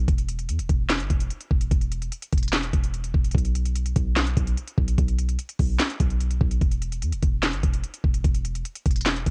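Hip hop trap excerpt at 147 BPM in a half-time feel, brooding and melancholic, where a deep, boomy 808-style bass with a sine body, a noise layer and a fast attack that then decays sits up front from the start, joined at 0.1 seconds by an electronic trap kit of knocking kick, sharp snare, crisp hi-hats and handclaps carrying a cassette tape coloring, all in a dry home cassette recording.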